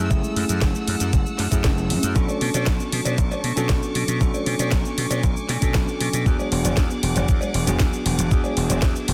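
Groovy and sunny, this nu-disco excerpt at 117 BPM rides a thumpy, up-front electronic kick and a house kit with hi-hat, shaker and cracking snare, while a punchy, overdriven slap bass drives underneath, and a distant cowbell joins at 2.3 seconds. A bell-like tine electric piano with dub echo, an earthy violin section holding sustained chords with light vibrato, and a soft, round background pluck playing arpeggios through chorus and tape echo all pump with sidechain compression. The chords move from F#m9 to Bm9 at 2.2 seconds and E9 at 6.3 seconds, wrapped in light reverb and a dense, heavily limited master.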